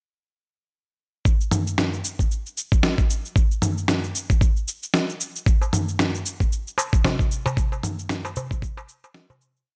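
A downtempo groove in 4/4 with a swung sixteenth-note feel, this short piece carries an earthy, mystical mood. A dusty, sampler-style soul drum kit enters at 1.3 seconds, its shaker, snare and low tom sounding gritty and overdriven, with a medium-tuned snare set in a small room ambience. Alongside it, an electronic kick drum adds a thumpy, compressed pulse, also overdriven and placed up front. At 5.6 seconds a metal-shell darbuka joins, crisp, close and dry, sounding its dum, tek and ka strokes. The whole short piece sits in a digital ambience and fades out from 6.9 seconds to its close at 9.7 seconds.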